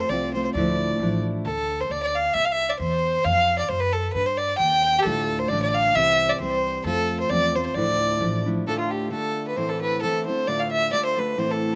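A dark, woody fiddle opens this driving, spirited Celtic polka in D minor, bowed by a single player with light vibrato and a slapback echo, sitting close and up front over a fingerpicked steel-string acoustic guitar. The guitar, full-bodied and dreadnought-toned, drops out at 1.5 seconds and returns at 5.1 seconds, while a pizzicato upright bass with steel strings anchors the low end until 8.6 seconds. The tune moves at 133 BPM in 2/4 with a gentle swing on the eighth notes, cycling through chords such as Dm, C, F and Ebmaj7 before settling into a passage built on Dm and Am. At 8.7 seconds a very quiet, reedy accordion enters with a mellow, dry drone beneath the fiddle. The sound is intimate and outdoors, with little reverb, and the recording is cut from a longer piece.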